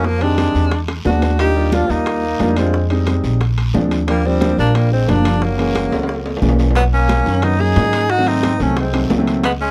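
A breathy, scooped tenor saxophone sings the melody up front in this sunny, lively Afro-Cuban jazz excerpt, joined by a woody pizzicato upright bass, a brilliant, punchy trombone carrying a forceful second line with vibrato, and a natural grand piano's accompaniment, while very quiet, tight bongos, high-tuned congas, raspy guiro and ringing metal-shell timbales fill out the percussion under light reverb and a dark production, with drum fills at 0.9 and 5.9 seconds.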